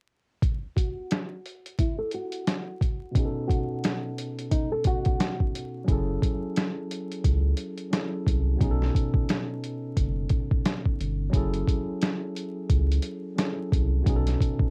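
A gritty, compressed boom-bap drum kit opens at 0.4 seconds with a thumpy kick and medium-tuned snare, setting a reflective, dark hip-hop groove at 88 BPM with a swung feel in F# dorian, captured as a dry home cassette recording with vinyl crackle and a filter sweep. A fingerpicked nylon-string guitar carries a brief classical melody through analog delay, and a clean tine electric piano, heard as if through built-in speakers, joins over B7 and F#m7 chords. From 5.9 seconds a deep, saturated sub bass with a fast attack sits up front beside the drums, and the piece is cut from a longer work at 14.7 seconds.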